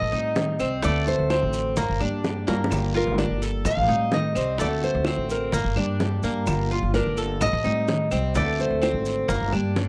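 A dry, close 1970s-style studio sound frames this nostalgic Cuban son and guajira passage at 128 BPM in G minor, where a full-bodied, fingerpicked nylon-string guitar carries the melody with audible finger squeak over metallic double-string arpeggios from the Cuban tres, a dark, thumpy pizzicato upright bass up front, and a jumbo steel-string acoustic guitar picking old-string accompaniment, while round, low-tuned bongos with a fill at 2.5 seconds lead the percussion ahead of background grainy maracas, a raspy guiro and saturated, woody claves through a repeating Am7b5, D7, Gm, Gm7 progression.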